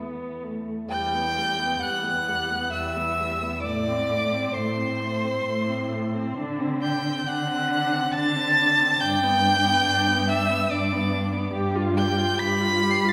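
A warm, up-front violin carries the high melody with vibrato and portamento from 0.9 s, alongside a dark, woody second violin line, while a distant, soft-attacked viola and a far-off cello, both bowed with vibrato and portamento, hold the accompaniment and bass from the start of this elegiac, solemn excerpt of a rubato classical string-quartet movement in triple time, heard in a reverberant recital hall.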